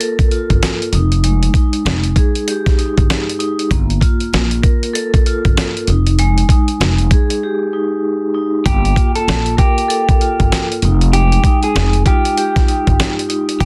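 Boom-bap hip-hop at 97 BPM with a swung, dark and moody feel, built on a rootless Gm9 and an Fm9 voiced by a ringing, band-limited vibraphone with vintage cassette-tape colour and medium motor vibrato. A gritty sampler-style drum kit with a thumpy kick and fat snare sits up front beside a woody, growly pizzicato upright bass that enters at 0.5 seconds. After a break at 7.4 seconds, a slightly broken-up electric guitar carries a short melody from 8.7 seconds through tape echo, all in a dry, dense, heavily limited mix cut from a longer piece.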